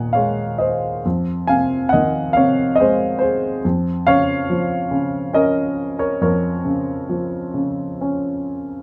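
Classical solo piano in Bb minor, lyrical and dark with a wistful cast, moving in a rubato 3/4 at roughly 63-72 BPM over a brief 8.8-second span cut from a longer piece. A warm concert grand carries everything alone from Eb2 up to Bb5, its worn, present tone sitting up front with deep bass and short sustain, passing through Eb7sus4, Fm7 at 1.0 seconds and Bbm/F at 3.6 seconds. A moderate small-room ambience gives the instrument a close, intimate setting.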